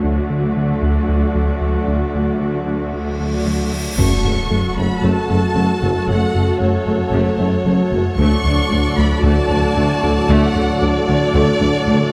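Relentless and futuristic, this cinematic hybrid orchestral and electronic film score cue in F# minor at 114 BPM opens with a smooth synth bass riff, tight sequenced synth arpeggios, an airy breathy pad, a warm viola section and a rich cello section, until a huge, bright cymbal swell rising from 3.3 seconds lands on an impact at 4.0 seconds that brings in a lush violin melody over a second violin line, very quiet dark trombones, mellow French horns, double basses and a distant tuba, all set in the moderate reverb of a scoring stage.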